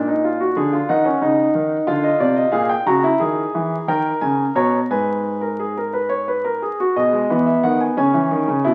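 A solo concert grand piano, intimate and up front with audible action noise and deep bass, opens this stately, elegant baroque-style three-part fugue in an uneven-beat 6/8, moving into a new section at 7.0 seconds, set in a reverberant stone room beneath the crackle of a very old 78 rpm record, in a brief fragment cut from a longer piece.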